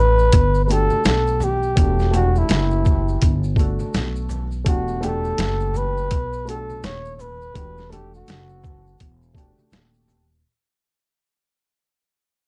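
A mellow flugelhorn carries the melody up front, playing a smooth-topped jazz solo with vibrato and scooped notes over a single Em11 chord in this cool, nocturnal jazz-hop fragment, which fades out across its full length. Beneath it sit a compressed, pitched-down boom bap sampler-style kit with a thumpy kick and medium-tuned snare, an up-front woody, bright pizzicato upright bass on steel strings, and a dark, worn upright piano with audible action noise and slight detuning. Distant maracas and congas, struck with hard hands in a ringing large room, enter at 0.2 s in the background, and the dry, gritty cassette-tape sound carries a swung sixteenth-note feel.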